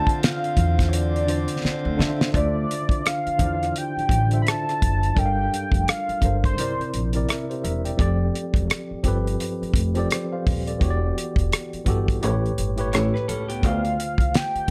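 A velvety synth lead with chorus and slapback echo carries the melody over a worn, slightly out-of-tune tine electric piano with a light overdrive and a brief reedy harmonium that breathes sustained chords until 2.3 s, setting a smooth, soulful neo-soul R&B groove at 85 BPM in D dorian with a swung sixteenth feel. A growly, woody pizzicato upright bass anchors the low end beneath a dry, damped 70s drum kit with a fat snare and tight kick that sits up front, while the lead drops out and the electric piano takes a fill before the harmony moves from Gm7 and C7 toward F6. A dark, slightly broken-up picked guitar with spring reverb adds a short second line from 12.9 s, and the lead returns at 13.7 s as this cut from a longer piece settles on Dm7.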